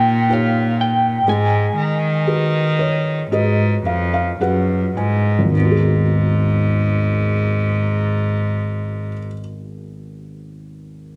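Light reverb gives this short cut from a longer acoustic folk-pop ballad an intimate, reflective air, with the cello sitting up front. A single bowed cello carries the bass line with a soft attack and a pure, floating sul tasto tone that also feels somehow distant. A felt-muted upright piano supplies dark, mellow accompaniment, its thick felt and audible action noise lending a smooth, vintage character. Over them, an electric guitar through a small old amp plays a brief fingered melody, slightly broken-up, compressed and lo-fi, shimmering with tremolo and tape echo before it stops at 4.4 seconds. The music slows through its opening section in a straight 4/4 and moves into a second section at 5.5 seconds. The cello bows out at 9.2 seconds, leaving the piano alone until the cut ends at 11.2 seconds.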